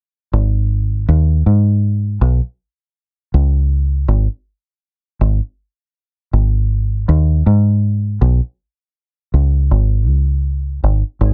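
This cinematic, melancholic trip hop excerpt moves at 80 BPM in 4/4 with a lightly swung sixteenth feel, in G# minor and tuned slightly flat. A deep, foam-muted fingered electric bass, round, punchy and up front, carries the whole passage from 0.3 s to 11.3 s over a G#5, Bsus2, C#5 progression in a dry room. At 11.3 s a very quiet reversed, granular texture swells in, dreamy and detuned with its own built-in reverb.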